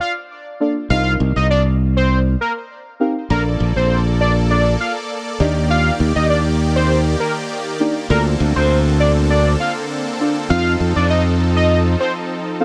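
A fat analog lead, built from sawtooth and square waves with a sub octave, opens this upbeat, summery pop excerpt at 100 BPM in Bb major. It carries the melody up front with chorus, delay, vibrato and an evolving filter sweep. A deep, mellow chord stab joins almost at once with a soft, dark, wave-folded tone, a fast decaying attack and its own chorus. A bright, growly fingered electric bass enters at 0.9 seconds, punchy and direct, and it is the loudest part. At 3.3 seconds, huge, lush supersaw chords arrive, detuned and sustained, sitting lower in the mix. Over a straight 4/4 feel, the harmony moves from Bbmaj7 and Cm7 through Ebmaj7 and Bbmaj7/D to F7 in a dry, close mix with little reverb, cut from a longer piece.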